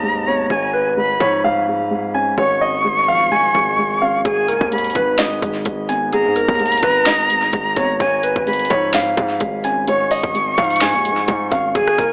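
Brooding and menacing, this half-time trap excerpt centers on a dark concert grand piano carrying the melody through a low-pass filter and dub echo, with an airy, vibrato-laden jazz flute tracing a second line above it and a felt-muted upright piano adding soft, boxy accompaniment underneath. A distorted 808-style bass rumbles with saturated, aggressive weight from the start, and a trap drum kit with a hard-clipped kick, sharp snare, metallic hats and rim clicks joins at 4.2 s. The echo-heavy mix has an AM radio quality and a small room ambience under moderate plate reverb, cycling between G#m and C#/G# chords.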